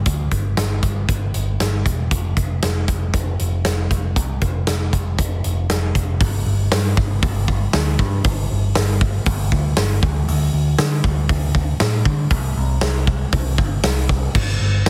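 A straight 4/4 pulse at 118 BPM drives this menacing hard rock passage, cut from a longer piece, with a big acoustic rock kit sitting up front as its punchy kick, medium-tuned snare, hi-hat and bright crash cymbals ring in a natural big-room sound. A picked electric bass, dark, round and amped, runs alongside from start to finish between E1 and D3, and the music moves into a new section at 6.2 seconds. The mix has little reverb and a heavily compressed, radio-like sound.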